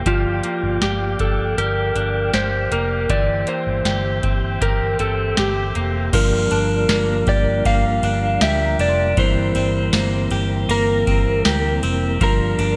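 A mellow, flute-like tonewheel organ with key click and fast rotary speaker holds sustained chords while a clean, compressed electric guitar picks arpeggios through subtle chorus and delay, opening this haunting, melancholic dream pop excerpt at 79 BPM in G dorian, moving between Gm7 and C7/G. A slightly broken-up slide guitar played with fingerpicks carries the melody through delay, over a dark, round, foam-muted fingered bass and an up-front, booming analog drum machine with deep kick, tonal snare, metallic hats, cymbals, tambourine and gated reverb. From 6.5 to 9.9 seconds a delicate, slightly out-of-tune celesta adds bell-like texture in the background, all set in a moderate plate reverb with bright 1980s-style digital production.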